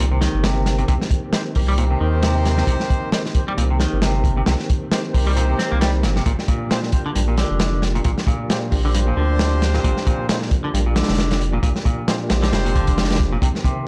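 A barely audible sub drop opens this energetic, swaggering breakbeat excerpt at 134 BPM with swung 16ths, as a crunchy, gritty drum kit with a tight kick sits up front beside a deep, tube-saturated sub bass, while a bright, clean semi-hollow guitar riff trails dub echo and a mellow tonewheel organ holds round, dark chords from the background through chorus vibrato, slow rotary speaker and sidechain pumping, moving from Cm7 to Bb6 at 6.3 s, with punchy, octave-doubled horn stabs carrying 12-bit sampler grit and their own dub echo entering at 1.3 s, all in a dark studio-reverb production.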